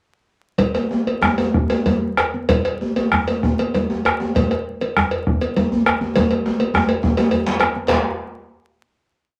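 A deep djembe with metal rattles leads this earthy, driving West African drum ensemble piece in 12/8, its hard-handed phrases sitting up front despite a distant, large-room sound, while a second djembe, tight and cracking, also with rattles, plays close. A round bombo, ringing high-tuned congas played with soft hands, and a metallic cowbell carrying the bell pattern fill out the ensemble, all set in a wet club reverb with vinyl crackle. The whole group speeds up throughout, plays a drum fill from 6.2 seconds, and closes on a final hit at 7.9 seconds.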